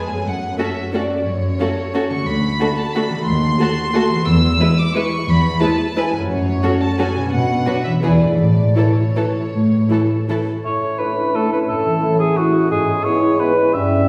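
Bittersweet and dark, this 14-second excerpt from a rubato orchestral ballroom waltz in A major at 152-193 BPM opens with a soft-attacked, sul tasto chamber violin section singing the melody over a second violin line, viola accompaniment, woody cello bass and ringing fingerpicked concert harp arpeggios, then at 10.6 seconds hands over to a woodwind passage of up-front cor anglais, hollow flute, distant clarinet and mellow bassoon, with a smooth-topped French horn section holding chords in the background, all heard from further back in a recital hall's wet reverb.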